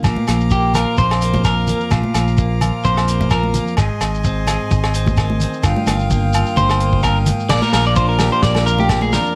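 Lightly reverberant, this sunny, joyful highlife guitar-band excerpt swings at 129 BPM in Bb mixolydian, with a picked clean electric guitar soloing until 7.5 seconds while an up-front, slightly broken-up second electric guitar plays compressed arpeggios with slapback echo from 0.5 seconds and again from 6.6 seconds, all over a direct, amped fingered electric bass, a tight, mid-forward soul drum kit with dark cymbals, smooth reedy accordion chords, and background agogo bells, grainy shekere and bright, high-tuned congas, as the harmony moves from Bb through Ab and Ebadd9/G back to Bb.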